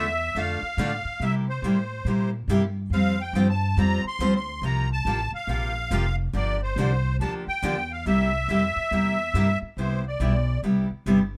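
Charming and swinging, this short cut from a longer acoustic string swing piece moves at 140 BPM with a lilting swing feel, the shimmering, reedy musette accordion carrying the melody up front over a bright, picked steel-string acoustic guitar accompaniment and a woody, thumpy pizzicato upright bass on gut strings. The harmony moves from Dm through C7, Fsus2 and Gm7 before landing on Cmaj7 at 9.8 seconds, where the accordion takes a brief solo until it stops at 10.6 seconds. The guitar and bass carry on a moment longer, all in a light reverb.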